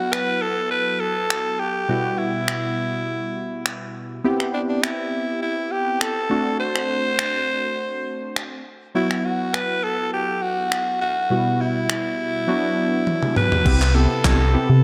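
Dance-pop at 102 BPM in E minor, this confident, driving fragment of a longer piece sets a raspy, scooped alto saxophone lead over chorused, detuned sawtooth analog keys and a thumpy, overdriven 80s drum machine with gated reverb snare, crash, snaps and handclaps, all bathed in dreamy plate reverb, until a drum fill at 13.1 s ushers in, at 13.7 s, a hollow, pumping FM bass and a very quiet pipe organ with soft flute stops on a Cmaj7.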